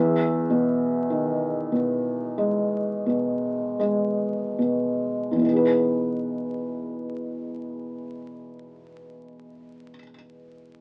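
Calm and peaceful, this short classical fragment, cut from a longer piece, features a felt-muted upright piano playing solo in E major, moving with a rubato feel between 34 and 54 BPM in 4/4. The piano sounds soft, muted, mellow, warm, smooth and intimate, with a vintage tone and audible action noise, sitting up front in the mix, and it spans E2 to E5 across the full 10.8 seconds. It opens on an Emaj7 chord and slows down through the first 5.4 seconds before a new section begins at that point. A moderate studio reverb gives the instrument a sense of space. Vinyl crackle from a very old 78 rpm record lends the whole recording a timeworn character.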